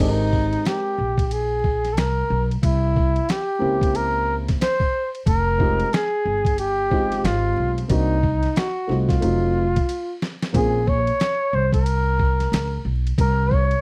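Jazz-hop at 91 BPM in Ab major, relaxed and smooth, with a swung 16th-note feel and a dry, close 1970s-style studio sound dusted with vinyl crackle. A mellow flugelhorn carries the melody up front with vibrato, scooped notes and a slapback echo, over a dark, vintage upright piano that drops out at 10.8 seconds, a woody, growly pizzicato upright bass, and a gritty, pitched-down boom bap sampler-style kit with a thumpy kick, a medium-tuned snare, hi-hat and ride. Chords move from Abmaj9 through C7b9, Fm9 and F7b9 to Bbmadd9, with a drum fill at 9.9 seconds before this short cut from a longer piece ends on C7(no3).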